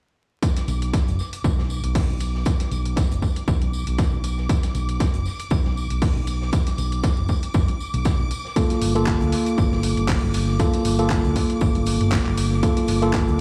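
A punchy, overdriven analog kick sits up front in this hypnotic, late-night deep house excerpt, joined by a gritty, compressed sampler-style kit of handclaps and hi-hat and a dark, smooth jazz kit adding hi-hat, medium-tuned snare and tambourine. A round, amped fingered electric bass pumps under a shimmering vintage string-machine violin pad with ensemble chorus, while the harmony moves from Bm to Gm9 at 8.6 seconds, where a clean, bright tine electric piano enters with stabs through digital delay. The whole mix carries vinyl crackle and the sense of being played on a big sound system in a bare room.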